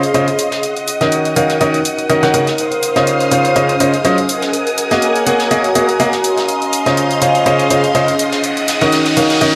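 A swung 4/4 groove at 123 BPM drives this euphoric, joyful piano house excerpt in Db major, with an electronic hi-hat carrying tape-warm hats and a very quiet brush kit adding soft snare and hat from the studio room. Up front, a bright, woody upright piano plays the riff with audible action noise through a low-pass filter and delay, over shimmering, vintage string-machine violins holding sustained chords and a warbling, nostalgic tape-like pad, dark and detuned, moving through Dbmaj9, Ebm7 and Gb69. The dreamy mix is soaked in lush hall reverb, and a background riser enters at 7.9 seconds.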